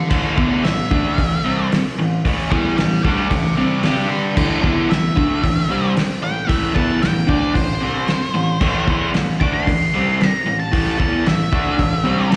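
Heard as a live gig through the venue's PA with a light recital-hall reverb, this gritty, swaggering garage rock excerpt in straight 4/4 has a dark octave-fuzz lead guitar carrying a distorted, slapback-echoed solo melody throughout. Beneath it, a raw, double-tracked garage guitar sits up front with an overdriven riff coloured by spring reverb and slapback echo, while a cloth-damped, lo-fi drum kit thuds along with a fat snare, tight kick, hi-hat and muffled crash cymbal. The harmony rests on A minor, dipping briefly to G5 at 3.8 seconds before returning at 4.4 seconds.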